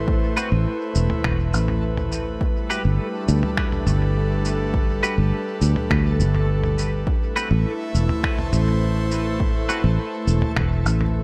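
An airy, breathy pad with chorus, a round, foam-muted fingered electric bass up front and a reversed, detuned texture swelling in the background open this hazy, spacious ambient dub piece at 103 BPM in A minor, moving from Amadd9 to G at 2.4 seconds and back at 7.1 seconds. A punchy, layered electronic kick and a muffled, pitched-down lo-fi sampler-style kit of cabasa, finger snaps and toms, both set in small room ambience and the sampler kit also carrying dub echo, keep a straight 4/4, while a clean, twangy electric guitar plays bright stabs through analog chorus and dub echo. Vinyl crackle and light reverb hang over the recording.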